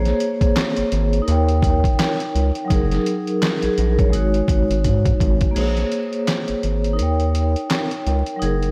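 Gritty and dark, this short boom-bap hip-hop cut from a longer piece rides a swung groove with a dusty layer of vinyl crackle. A vibraphone played with medium mallets carries the accompaniment, its metallic, ringing chords colored by a slow motor vibrato and filtered through a cassette tape character. Beneath it, a round analog bass sits up front with a deep, saturated, wave-folded tone that feels mellow yet evolving. The sampler-style drum kit enters at 0.1 seconds, compressed, pitched down and overdriven, with a thumpy kick, a medium-tuned snare, hi-hat, handclaps and crash cymbal, all sounding muffled as if re-recorded in a small room. A drum fill at 4.8 seconds leads into a break from 5.6 seconds, while the harmony cycles through moody minor-ninth and seventh chords under light digital ambience.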